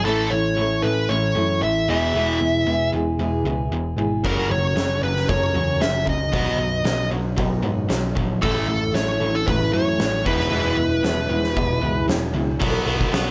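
A nasal, overdriven lead guitar with a parked wah and slapback echo carries an up-front melody over fingerpicked steel-string acoustic arpeggios with audible finger squeak, a bright distorted riff guitar and a round, punchy hollow-body bass, until an oversized low-tuned drum kit with a fat snare, boomy kick and gritty, pumping big-room sound enters at 4.2 s, giving this cathartic, restless excerpt of quiet-loud alternative rock its full weight in a moderate studio ambience.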